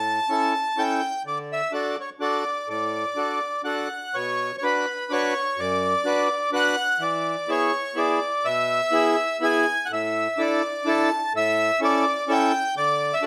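In a bouncy 3/4 at 126 BPM with a light swing and loose rubato, this jolly alpine folk passage, cut from a longer piece, sets a full, dark, smooth accordion melody up front over a hollow, reedy accordion accompaniment in the lower register, both playing throughout its 13.3 seconds in a moderate studio reverb as the harmony moves from A7 and D through Bmadd9, E7 and Asus4 back to A7.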